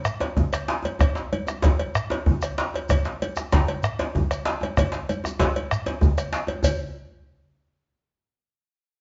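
A deep, dark bombo sits up front in this powerful, festive excerpt of West African traditional drumming, set in a straight 12/8 at 128 BPM (dotted quarters) and speeding up throughout. Around it, a djembe with metal rattles and a vintage, band-limited tone joins a metallic, dry cowbell, thick-skinned congas played with soft hands, and a grainy, mellow shekere that opens the piece at 0.0 s. The ensemble plays live together in one room, wrapped in a reverberant studio ambience, with the drumming stopping at 6.8 s just after a new section begins at 6.6 s.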